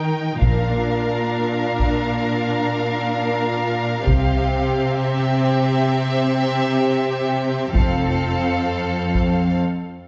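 A moderate scoring-stage reverb surrounds this short cut from an epic orchestral film score, triumphant and majestic at a slow 65 BPM in a straight 6/8, building over chords of Bb, C and F in C mixolydian. A focused violin section carries the melody above a more distant second violin line, while a smooth-topped viola section accompanies and an up-front cello section holds the bass, all bowed with rich vibrato. A close, expressive double bass section sounds in brief portamento touches at 0.4, 4.1 and 7.8 seconds, heavy-stick taiko drums pound through to 9.4 seconds, and the strings stop at 9.6 seconds for a short break.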